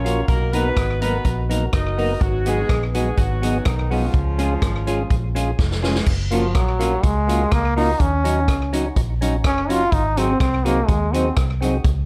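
A straight 4/4 ska groove at 124 BPM in F# major rides on a swinging big-band drum kit that sounds roomy and distant yet sits up front, with a punchy kick, a medium-tuned snare, rim clicks, hi-hat and crash cymbal, all with a rolled-off top. Beneath it, a dark, round, foam-muted electric bass sits up front. A clean, picked hollow-body jazz guitar plays accompaniment in the background, and a fat, lightly overdriven tonewheel organ adds percussive stabs through a stopped rotary speaker with slapback echo and plate reverb. The opening melody comes from a mellow, tight horn section in octave doubling, smooth on top and carrying slapback echo and plate reverb, until it stops at 5.6 s and a drum fill leads into the next section. From 6.3 s a brilliant, close-miked trombone takes a punchy solo with vibrato and slapback echo, standing out front in a moderate studio reverb. The mood of this cut from a longer piece is upbeat and cheerful.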